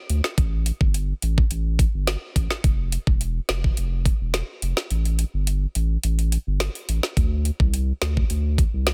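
The recording has a dense, heavily limited modern master with a digital ambience, and the two parts sit up front. It is a bouncy, sultry dancehall groove at 106 BPM in a straight 4/4, tuned to A4 = 441 Hz, cut from a longer piece. An electronic, produced afro-pop drum kit runs from 0.1 seconds, pairing a knocking kick and a woody snare with metallic hi-hats. Alongside it, a saturated sub bass moves between E1 and D2 with a deep, thick, triangle-like tone, a fast attack and sustained notes. The kick drops out from 4.9 to 7.2 seconds, leaving the snare, hats and bass to carry the groove before the opening material returns.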